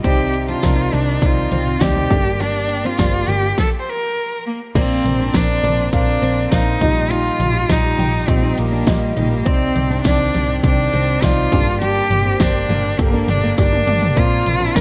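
A bright, 1980s-style digital production with light reverb and small-room ambience frames this anthemic piano-driven pop excerpt, where a clear, focused bowed cello carries the melody up front with vibrato over the deep, long-sustaining accompaniment of a warm concert grand piano. Electronic drums with a punchy kick, a fat snare and metallic hats, a dark, round foam-muted electric bass, a full-bodied fingerpicked acoustic guitar riff with analog chorus in the background, a jingly tambourine entering at 0.6 seconds and a very quiet, earthy string section holding sustained chords fill out the arrangement. The music stops briefly at 3.6 seconds before the groove returns, and a drum fill at 13.6 seconds leads into the final chord near the end of the clip.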